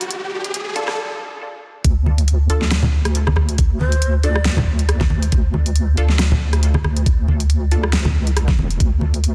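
A prominent electronic riser opens this dark, meditative deep dubstep excerpt at 0.0 seconds, alongside an overdriven, layered dubstep kit of hi-hat, rim click and a huge snare set in a small room. A muted, wave-folded chord stab in D minor soon drifts in behind, sawtooth and pulse tones treated with phaser and dub echo and kept in the background. At 1.8 seconds the half-time drop lands at 138 BPM with swung sixteenths. An up-front, overdriven knocking kick and a deep, saturated wobble bass, built from detuned square and sine waves thickened with chorus, take the front of the mix, while bright, low-tuned congas sit close and dry underneath. Around 3.8 seconds a breathy low ney, end-blown with vibrato and an unsteady, tongued reed-cane tone, adds a brief phrase trailed by dub echo. The dense, heavily limited master carries light reverb.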